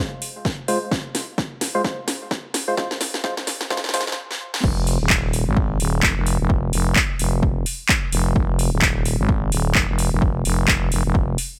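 An overdriven house kit opens this aggressive, swaggering bass house cut at 129 BPM in F minor with a drum fill of cracking snare, metallic hats, handclaps and crash. A punchy electronic kick and a hollow, organ-like stab on Fm follow, the stab treated with chorus, sidechain pumping and dub echo as a filter sweep builds tension. After a brief stop at 4.2 seconds, the drop lands at 4.6 seconds, where a growling, thick FM bass, overdriven and pumping, sits up front beside the drums over a swung sixteenth feel, all under light reverb and a high-pass filter.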